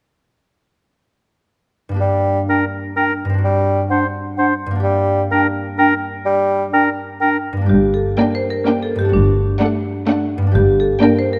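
An excerpt of quirky, sneaky cinematic music in G minor at 127 BPM in 3/4, opening with up-front, ringing harp arpeggios at 1.9 s, soon joined by a clear bassoon, a hollow flute group, a clarinet and an oboe, before a bright, hard-mallet marimba takes the melody at 7.7 s over a lush bowed cello section and a rich bowed double bass section, with violin and viola sections adding vibrato-rich lines, all set in a moderate scoring stage reverb.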